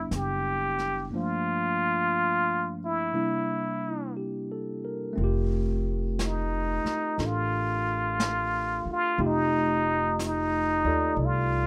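Jazz ballad in a tender, intimate mood, taken from a longer piece and moving at an unhurried swung pace in four. A trumpet with a plunger mute carries the melody up front, its clear, breathy tone colored by a wah-wah quality, light vibrato and scooped notes, and it moves into a muted solo at 5.2 seconds as the harmony shifts. Beneath it, a bright, barky tine electric piano supplies clean, direct chords that open on a rootless Cmaj9, while a woody, thumpy upright bass played pizzicato sits close in the mix. A jazz kit played with brushes joins at 0.1 seconds on snare and hi-hat, its dark, smooth sound rolled off at the top. Light reverb gives the group the feel of a small studio room.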